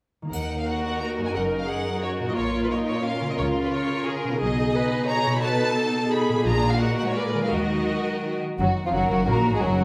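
A clear, intense violin section carries the melody of this urgent, stormy orchestral fragment in Eb minor, a fast romantic movement in 3/4 at 176 BPM, sounding distant and lush over a smooth second violin line and a viola accompaniment with portamento that enters at 0.7 seconds. Rich, close cellos and expressive double basses anchor the bass while a mellow concert harp rings out arpeggios in the background, and a dry triangle taps only in the opening second. An airy flute group joins at 8.6 seconds, all within a moderate scoring-stage reverb that gives the dramatic harmony, moving from Ebm through B7 and Bb7b9, a spacious sheen.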